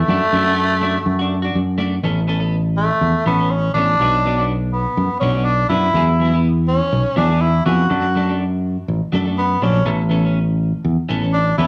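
A raspy, gritty tenor saxophone with vibrato and a round, dark fingered electric bass open this joyful, sunny highlife guitar band piece at 123 BPM in A major, joined at 0.1 s by a clean, scooped electric guitar with lush chorus, before the up-front saxophone, carrying a cassette-tape tint, takes a solo from 2.0 s over chords moving through Aadd9, Bm and Eadd9, all set in a small room with light reverb and a lilting sixteenth-note swing.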